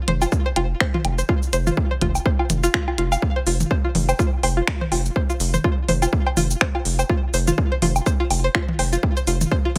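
Opening at 0.1 s with a bright, twangy string-like resonator pluck riff between F4 and F5 through chorus and digital delay, a rubbery, hollow square bass on F1 (both pumping with sidechain), a clicky minimal kit of cabasa, finger snaps and hi-hat, and tape-tinged electronic toms and woodblock with delay, this quirky, cool minimal techno cut at 124 BPM in 4/4 with swung 16ths over an F5 chord adds a punchy, overdriven electronic kick at 0.3 s in a dry room sound.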